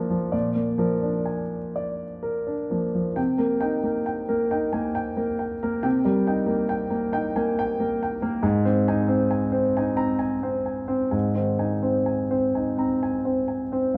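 Wistful and melancholic, this brief excerpt of neoclassical minimalist solo piano drifts in a rubato 6/8, its harmony moving from Bb7 to Cm7 at 3.2 seconds and settling on Ab at 8.4 seconds. The concert grand sits up front with a warm tone, deep bass and short sustain, spanning Ab2 to Ab6. It was captured live in a stone room whose wet reverb lingers around each phrase.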